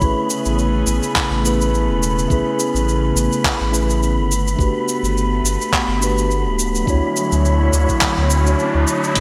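A relaxed, sunny sunset chillout groove at 105 BPM in 4/4 with a light 16th-note swing, where a knocking electronic kick and a tape-warm deep house kit of cabasa, handclaps and hi-hat sit under a round, deep analog bass that stays up front. A mellow tine electric piano plays filtered, delayed accompaniment over an airy, detuned pad with chorus, moving through Amaj9, Gmaj9 and Dmaj9, while a dark, wind-like tuned noise texture hovers high above. An electronic riser enters at 6.6 seconds, all bathed in a lush hall reverb with bright 1980s-style digital production in this short excerpt from a longer piece.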